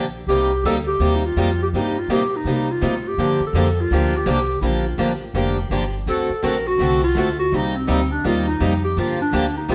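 A wet stone-room reverb surrounds this fiery, virtuosic 166 BPM gypsy-jazz swing excerpt in G minor, where a mellow, subtoned clarinet with light vibrato and scooped notes takes the up-front solo from 0.3 seconds over a bright, picked swing-style acoustic guitar and a woody, thumpy gut-string upright bass, joined at 3.2 seconds by a boxy plugged-in archtop guitar in the background, all moving through Cm9, Gm9 and D7#9.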